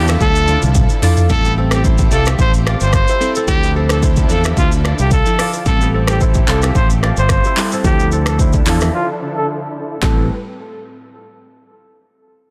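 Afrobeats excerpt in A minor at 110 BPM, with a lightly swung 16th-note feel and a hypnotic, mellow mood that circles between Dmadd9 and Am7. A clear pop-style trumpet carries the melody with light vibrato and a smooth top, touched by digital delay, while a ringing, fingerpicked kora plays a crisp riff through its own delay. Glassy digital keys with an airy, sine-like tone and a chorus sit in the background as accompaniment, and a bowed studio string section adds soft-attack sustained chords behind them. A fingered electric bass, warm and direct, anchors the low end alongside an overdriven, electronic afro-pop drum kit that sits up front with a deep kick, woody snare, metallic hats, snaps, claps, shaker, rim clicks and toms. A drum fill opens the piece, a filter sweep runs from 1.3 to 10.0 seconds, and a break arrives at 8.9 seconds, all within a dense, heavily limited modern master with digital ambience.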